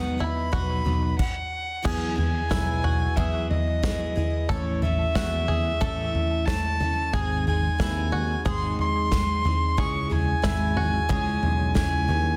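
A dense, heavily limited modern master sits in a moderate large-studio reverb, giving this hopeful indie folk fragment a full, roomy presence as its arrangement builds. An up-front, dark fiddle carries the melody as a single bowed player with light vibrato and a nasal, woody, boxy tone, while a bright picked steel-string acoustic guitar supplies the accompaniment. A twangy bluegrass banjo played with fingerpicks adds percussive arpeggios through an analog delay before dropping out at 11.7 s. The acoustic drum kit, also up front, brings a tight kick, medium-tuned snare, toms and crash cymbal struck with bundle sticks, and a growly picked electric bass enters at 0.5 s. After a brief stop at 1.2 s, the straight 4/4 groove moves through chords from Eadd9 to A, G# and C#m.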